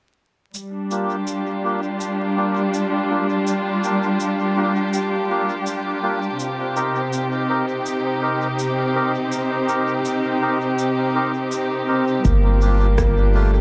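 A lightly swung electronic shaker and rim click, tape-tinged and soaked in dub echo, set a hazy, meditative ambient dub groove beneath veiled, muted strings that hold sustained chords through a low-pass filter. A reedy, breathy melodica drops filtered, echoing stabs over a bed of vinyl crackle and spring reverb. Near the end of this cut from a longer piece, a smooth solo trombone enters at 11.9 seconds with a short echoed melody, and a round, up-front sub bass and a deep, very quiet electronic kick arrive at 12.2 seconds as the harmony returns to its opening chord.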